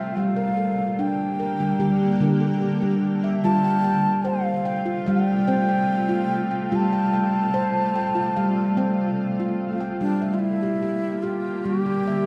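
Hypnotic and gentle, this meditative world piece moves at 73 BPM in G dorian, cut from a longer work, with a ringing stainless-steel handpan up front playing arpeggios through a diffuse ambient delay. A breathy bamboo bansuri carries the melody with vibrato and a crisp attack, while a cloudy, detuned granular pad holds bright sustained chords in its own built-in reverb, shifting from Gm to F and returning to Gm at 10.0 s. The dark production sits in a wet echo-chamber reverb with small-room ambience.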